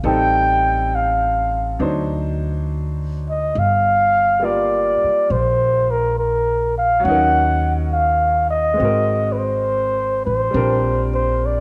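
A bright, vintage-toned upright piano and a woody, thumpy pizzicato upright bass on gut strings open this intimate, tender jazz ballad fragment with a gentle swing. At 0.1 seconds a breathy, mellow flugelhorn steps up front to carry the melody, colored by light vibrato, over a progression that moves from Am7b5 and D7b9 through Gm7, Ebm7 and Ab9 to settle on Bb69. A moderate echo-chamber reverb with a small-room sense lends the cut-down passage a close, softly glowing space.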